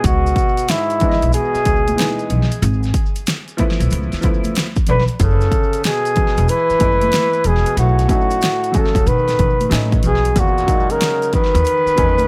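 Jazz-hop with a smoky, nocturnal mood, this 12-second excerpt from a longer piece moves at 93 BPM in 4/4 with a swung sixteenth-note feel, set in C# minor. A breathy, mellow flugelhorn carries the melody up front with light vibrato and scooped notes, while a breathy tenor saxophone plays a lower second line with subtone and a smooth top, both bathed in tape echo. A clear, worn upright piano with a slightly detuned, woody character supplies the chords, moving from C#m9 through G#m6, C#7alt, F#m11 and B9 to Emaj9#11. Pizzicato upright bass with steel strings anchors the low end, and an electronic, layered pop drum kit sits up front with a punchy kick, fat snare and bright hats touched by tape echo. Maracas and congas, compressed and saturated, sit in the background from 0.1 seconds, and the whole mix carries light reverb and studio ambience with a heavy echo character.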